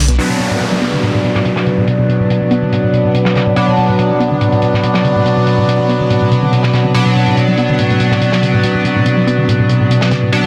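Driving peak-time techno at 142 BPM in B minor, this relentless excerpt opens with a dusty, warbling pluck riff at 0.0 seconds, soon joined by up-front, edgy stabs from a sync-sweep polysynth with a nasal sweep and digital delay, while a metallic, inharmonic FM drone on B2 sits eerily in the background from 0.8 seconds. A tight funk drum kit with a high-tuned snare and filtered hi-hats adds a natural, small-room acoustic feel, and an electronic downlifter falls away by 3.6 seconds as a filter sweep runs over the synth arpeggio. The mix carries a moderate plate reverb and a dense, heavily limited modern master.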